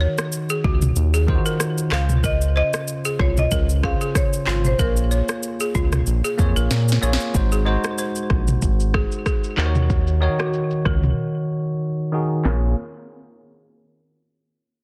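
Afrobeats at 94 BPM in Bb minor, this mellow, smooth excerpt from a longer piece rides a gently swung sixteenth-note feel over chords moving from Ebm7 through Dbmaj7 and Bbm7 to Ab7 before returning to Bbm7. A woody marimba struck with hard mallets carries the melody until 6.7 seconds, while a bell-like tine electric piano supplies clean, bright accompaniment and a buzzing balafon repeats a riff through a digital delay. Underneath, a round analog bass sits up front with a deep, dark, sustained tone and a fast attack. The produced afro-pop drum kit enters at 0.2 seconds with a deep kick, a sharp snare with soft clipping, rim clicks, shaker, handclaps and toms, and a drum fill from 6.7 to 7.3 seconds leads into a filter sweep and a break near the end. The mix is dense and heavily limited, with light reverb and a low-pass filter giving it a smooth, rounded finish.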